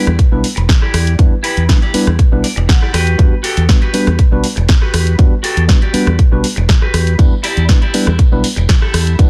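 A tine electric piano with phaser and a twangy, picked clean electric guitar riff open this groovy, nostalgic filtered disco house excerpt in E minor at 120 BPM. Both pump under a low-pass filter as a foam-muted fingered bass and a house kit of punchy snare, rim click and bright hats join moments later, followed closely by a punchy electronic kick, the kick and bass sitting up front. The guitar adds a fill from 2.2 to 3.2 seconds while the chords move between Em7 and Gmaj7, and a very quiet acoustic tambourine slips in at 7.2 seconds, all within a dry, dense, heavily limited mix.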